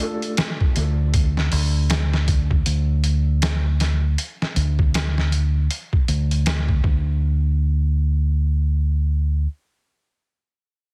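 Squeezed into a heavily compressed, radio-like sound with little reverb, this cinematic, melancholic trip hop fragment opens on a dark, woody upright piano with audible action noise, treated with tremolo, low-pass filtering and tape echo, which sounds only until 1.2 seconds. A gritty, pitched-down sampler kit with a thumpy kick and tape-warm tone sits up front in swung sixteenths until 7.0 seconds. A round, punchy dub bass enters at 0.8 seconds under a filter sweep and carries on past the drums until 9.5 seconds.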